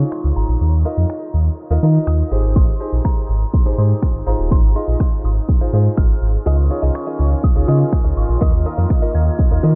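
Dance-pop with a euphoric, carefree mood, this excerpt moves at 123 BPM in a straight 4/4 in Ab major, with a filter sweep running through its full length. Up front, a punchy, layered electronic pop kit of kick drum, finger snaps and shaker sits alongside a deep, full sub bass with an added octave, its sine-and-triangle tone sustained and pumping against the kick. A brilliant concert grand piano plays polished, short-sustained accompaniment that also pumps, while a soft, pure FM synth bell carries the melody high in the background, decaying gently through chorus, phaser and a diffuse ambient delay. At 6.5 seconds a woodwind section with light vibrato and a smooth top adds sustained chords in the background, and a clean, scooped, direct-recorded electric guitar enters with a picked riff coloured by analog chorus. The kick drops out briefly from 6.5 to 7.4 seconds as the harmony returns to Dbadd9, having cycled through Ebsus2, Abmaj7 and Fm7. 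Light reverb and a low-pass filter shape the overall sound.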